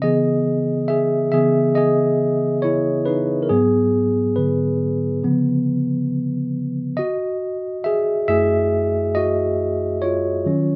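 Late-night and sultry, this slow R&B excerpt at 69 BPM in C# minor features a lone tine electric piano, clean and up front yet heard through built-in speakers, moving through C#m9, G#m7b5, C#7 and F#m9 with a light sixteenth-note swing in a wet studio reverb and a rough home demo mix.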